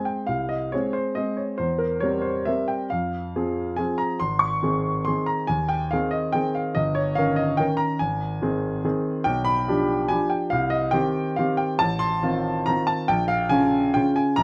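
A clear, natural baby grand piano sits up front in light reverb, playing a solo classical waltz in 3/4 with an elegant, nostalgic mood and a freely breathing rubato, its minor-key harmony drifting through seventh chords across a span from deep bass to high treble in this short passage cut from a longer piece.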